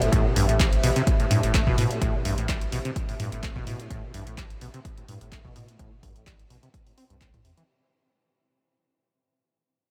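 Acid house at 127 BPM in A minor with a light 16th-note swing, driving and raw, this short excerpt cut from a longer piece sits on an Am7 chord and fades out across its 7.7 seconds. A squelchy, resonant sawtooth acid bass riff sits up front with lush chorus, diffuse ambient delay and sidechain pumping while a filter sweeps it throughout, over a round sine sub bass that also pumps, a punchy tape-toned kick re-recorded in a small room, and an analog drum machine supplying handclaps and hi-hat. A moody, warbling, detuned vintage pad with chorus and its own reverb pumps behind them, and a huge ambient reverb soaks the whole mix in a dreamy wash.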